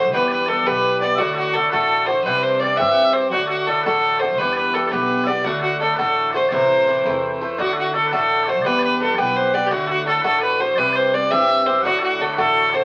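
Driving and wild, this Celtic jig runs at 113 BPM in a straight 6/8, tuned slightly sharp to A4 = 445 Hz, and is cut from a longer piece, this excerpt lasting 12.8 seconds. A clear, earthy fiddle carries the melody up front throughout, bowed by one player with light vibrato and a close presence. Alongside it, mellow small bagpipes hold a sweet, continuous second line with their own vibrato, while an Irish bouzouki, picked on double strings with a metallic edge, sits forward in the accompaniment. A woody pizzicato upright bass sits low and faint under the texture. The chords cycle through Em, D, C and Am across two passes of the same section, the second beginning at 7.6 seconds, all heard through a wet studio reverb and the crackle of a very old 78 rpm record.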